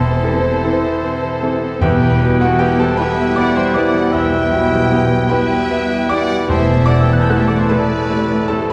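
A bright, polished concert grand piano leads up front with the melody, its long sustain, deep bass and audible action noise set against a brooding, passionate romantic orchestra in E minor, moving slowly at 51 BPM in a rubato 12/8. Behind it, a dark violin section carries the melody while a warm, lush one plays a second line with portamento, both with vibrato. Airy flute, clear oboe and a very quiet clarinet add further lines, and bassoon and viola fill the accompaniment over cello and distant double bass, which stop at 7.5 seconds. A brilliant trumpet adds stabs, trombones and dark French horns hold sustained chords from 0.2 seconds, and soft-mallet timpani enter at 1.8 seconds, all heard from further back in a wet scoring-stage reverb in this short cut from a longer piece.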